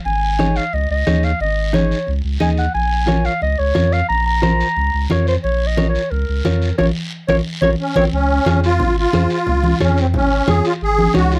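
A driving, fiery cumbia groove at 178 BPM in Bb minor is carried by ringing congas, a raspy guiro and a round, deep sub bass sitting up front, while a bright, twangy clean electric guitar recorded direct plays compressed, picked accompaniment. A mellow clarinet takes a jazz-style solo with light vibrato, subtone and scooped notes through the first 8.1 seconds, capped by a band accent from 6.8 seconds. A reedy, shimmering musette accordion with slapback echo then enters at 7.8 seconds to carry the melody over Db and Absus4 chords, all in a close, dry 1970s-style studio sound with light reverb, cut from a longer piece.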